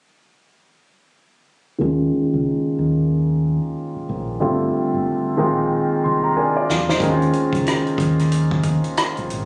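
Swung sixteenths in 4/4 set a relaxed, laid-back neo-soul R&B groove in this brief cut from a longer piece. From 1.8 seconds, a clear, intimate grand piano carries the accompaniment through suspended ninth chords, moving from Eb9sus4 to G9sus4 and Bb9sus4 before returning to Eb9sus4, with a low-pass filter sweep running across its whole part. The piano sits up front with a polished presence, deep bass and audible action noise, and it adds a short fill from 5.7 seconds. Underneath, a dark, round fingered electric bass holds the low end. The drums enter at 6.7 seconds with a brief fill, bringing a punchy kick, a medium-tuned snare, rim clicks and hi-hat in a tight, mid-forward kit sound with a rolled-off top. The mix has a touch of light reverb and compression, plus the slightly informal character of a phone recording made in the room, keeping the mood mellow and warm.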